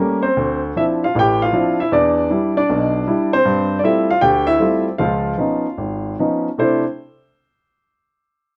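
A warm baby grand piano plays alone, up front and natural-sounding, in this relaxed, playful slice of solo jazz cut from a longer piece, its swung eighths loosened by rubato across a range reaching from Ab1 up to G5. The harmony moves through Dm9, Em7, G9sus4 and Db9 before arriving on C69 at 6.6 seconds, where a new section begins just as the piano stops at 6.8 seconds. A moderate studio reverb surrounds it, and a worn cassette tape character adds a warbly pitch drift to the sound.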